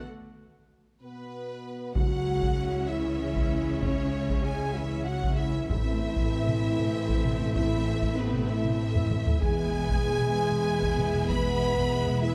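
Relentless and heroic, this cinematic orchestral cue in C# minor moves at a slow 64 BPM in 6/8, with a lush violin section carrying the melody over a smooth-topped second violin line, a soft-attack viola accompaniment and mellow French horn chords, while a dark, distant trombone section enters very quietly at 1.0 seconds. From about 2.0 seconds the compressed, saturated taiko ensemble drives the piece under heavy sticks, joined by a brief burst of hard-mallet timpani. A woody double bass section and an expressive cello section with portamento hold down the bass, while a background string section sustains chords through C#m, Am and E. The recording is close and detailed, with light reverb, and the taiko fill near 9.0 seconds stands out.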